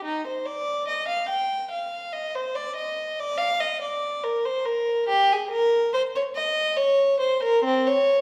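Classical music in a baroque style: this brief passage from a suite movement for unaccompanied violin lasts 8.2 seconds and is cut from a longer piece. A single bowed violin plays alone throughout, moving between C4 and G5 in a flowing triple metre shaped by rubato. The mood is introspective, and the period-style playing carries a light vibrato over a warm, reedy, gut-string tone. The violin sits up front, while a generous recital-hall reverb places the listener further back in the room.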